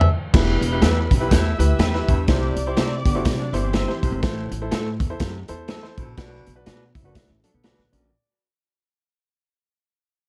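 A crunchy breakbeat drum fill and band accent kick off this driving, urgent 1960s-style soul groove in E minor at 123 BPM with a swung feel, as thumpy pizzicato upright bass, short-sustain baby grand piano, a raspy baritone saxophone riff, veiled con sordino strings until 4.2 seconds, slightly broken-up lo-fi guitar stabs with vibrato and tape echo, and, from 3.1 seconds, a dark hollow-body jazz guitar riff in the background move through Em, C, Am and Bm under a fade-out in a dark, warm production.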